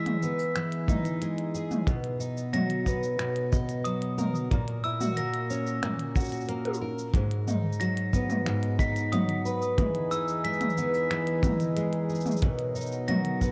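A dark, warm production with light reverb and small-room ambience frames this playful folktronica fragment, led by an up-front, fingerpicked twelve-string acoustic guitar whose woody, shimmering, octave-doubled arpeggios carry a digital delay. A bell-like glockenspiel struck with hard plastic mallets adds an airy second line with vintage sampler grit. A minimal electronic kit of clicky hi-hat, cabasa, finger snaps and toms sits beside a muffled, saturated kick drum that enters at 0.9 seconds, before a reedy, breathing pedal harmonium joins with mellow sustained chords at 9.8 seconds.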